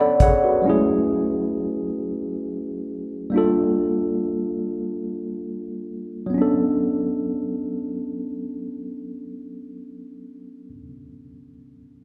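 R&B excerpt in 6/8, yearning and sultry, carried by a lone worn, slightly out-of-tune tine electric piano that sits clean and up front in a moderate concert-hall reverb, opening with a brief fill, slowing down until 6.3 seconds, and drifting through Bm9, F#m9 and Gm9 chords before returning to Bm9.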